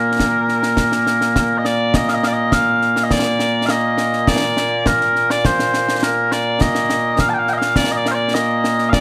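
In a straight 4/4 at 103 BPM in Bb major, this ceremonial, stirring excerpt of Scottish traditional pipe music sets mellow, sweet small bagpipes up front as the continuous solo melody with vibrato, joined from 0.2 seconds by close, dry concert snare and bass drums with dark cymbals, all captured with detailed close microphones and light reverb.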